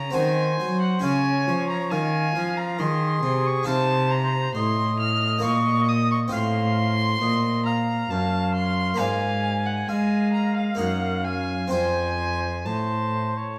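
In a straight 3/4 at 68 BPM, this grave, solemn passage cut from a baroque-style classical sonata movement sets a nasal, gut-string period violin melody up front over a dark, smooth-topped bowed cello bass, with a full, plucked Italian-style harpsichord accompaniment and a distant oboe with vibrato and a soft attack entering at 0.2 seconds on a second line, inside a wet recital hall reverb.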